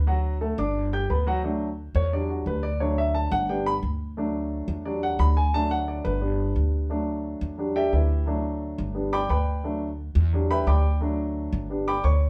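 A brisk, straight 4/4 pulse at 176 BPM drives this festive, danceable salsa fragment in D major, taken from a longer piece. An upright bass sits up front from the first moment, its plucked gut strings giving a woody, thumpy, dark low end. A polished grand piano joins at 0.1 s and steps into a solo at 1.4 s that runs to the close. Its tone is present and up front. The harmony cycles steadily through D, G, D and Em7. The pair sound like a band playing live in one room, with a wet studio reverb giving the space a gentle glow.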